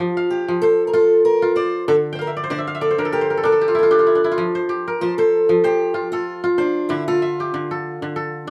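A lightly swung sixteenth-note groove in 4/4 carries this hypnotic fragment of West African string and xylophone music, cut from a longer piece. The kora spins ringing, crisp arpeggios across its range, bright and up front, and it adds a fill in the first section. A fingerpicked acoustic archtop guitar carries the melody with a boxy tone, audible finger squeaks and a plate reverb, sitting just as near. At 4.4 seconds the second section begins and the guitar moves into a solo, as the harmony settles on F before turning to D minor at 6.9 seconds. A moderate studio room and a dark, warm production tie the two plucked voices together.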